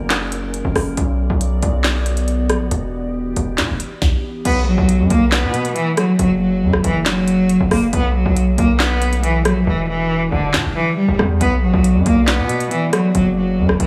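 Ominous and cold, this half-time drill hip hop excerpt opens on a glassy, ethereal FM pad with chorus and built-in reverb over a heavy, saturated 808-style bass and an up-front drum kit of knocking kick, sharp snare, crisp hi-hats, rim clicks, handclaps and crash, before a smooth, bowed cello with vibrato takes the melody through a low-pass filter and digital delay at 4.5 seconds, the hi-hats dropping out from 9.7 to 11.4 seconds and the pad returning near the close.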